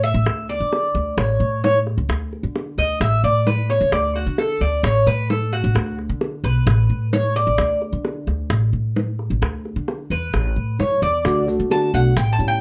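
Relaxed and warm, this Cuban son and guajira passage, cut from a longer piece, features a metallic, double-strung Cuban tres soloing up front in picked arpeggios over a woody, thumpy pizzicato upright bass and tight, high-tuned bongos played with soft hands, while a fingerpicked classical nylon-string guitar with audible finger squeak enters at 11.2 s and grainy, mellow maracas join at 11.3 s, the whole heard in a dark production with moderate studio ambience.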